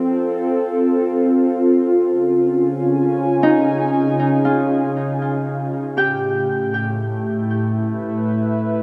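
At a slow 59 BPM in straight 4/4, this short ambient fragment drifts with a weightless, luminous mood. A warbly, tape-like pad sits up front, holding sustained chords with a slow attack and long release; its detuned, lo-fi tone is shaded by chorus, phaser and its own reverb, giving it a nostalgic, mellow glow. Beside it, an acoustic Celtic harp plays thumb-plucked arpeggios that ring out through a delay. The harmony moves from F to Db at 1.9 seconds and settles on Asus2 at 6.0 seconds. A huge, wet ambient reverb surrounds both parts, and the piece fades out from 3.3 seconds as the cut from the longer work closes.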